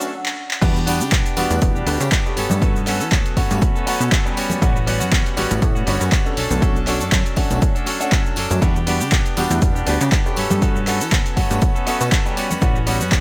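Filtered disco house at 120 BPM in E dorian with a groovy, sensual swing, this cut opens with a punchy analog drum machine of crash, handclaps, hi-hat and shaker, a plucky, funky sawtooth-and-square bass with ring modulation, a brilliant grand piano with audible action noise, phaser and 12-bit sampler grit playing chords that move through Bm9, Em7, Gmaj9#11 and A13, a twangy, compressed clean guitar riff carrying the same grit, and background tambourine and congas struck with hard hands. A short drum fill leads into the drop at 0.6 seconds, which brings in an up-front, tape-warm electronic kick, with sidechain pumping on every part except the kick, all in a light reverb.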